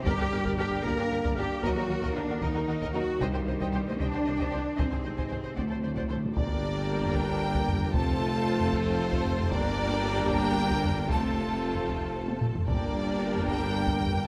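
A taiko ensemble with heavy sticks drives this dramatic, relentless epic orchestral film-score excerpt in 6/8, where a clear, focused violin section carries the melody over lush bowed violins, violas and close cellos, with distant double basses and a dark tuba in the bass, mellow French horns and trombones holding chords, round, very quiet timpani surfacing briefly, and a soft-attack string section entering at 6.4 seconds, all within a moderate scoring-stage reverb.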